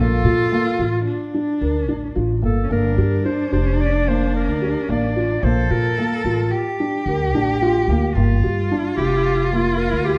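From the first moment, a breathy clarinet, a bowed cello, a felt-muted upright piano and a plucked upright bass sound together in this pensive, restless piece of contemporary chamber music, cut from a longer work and lasting about 10.2 seconds. The clarinet carries the melody in a jazz-style solo voice, its subtone tone clear and present with a light vibrato. Just beneath it, a single cello plays an expressive second line, up front and rich, with soft attacks, vibrato and portamento slides. The upright piano's thick felt dulls its arpeggios to an intimate, mellow murmur, while the pizzicato bass, woody and up front on steel strings, anchors the low end. Set in an uneven 5/4 with a straight feel, the harmony sways between Bbmaj7 and Gm7, and a recital-hall reverb wraps the dark, warm production in a generous, wet ambience.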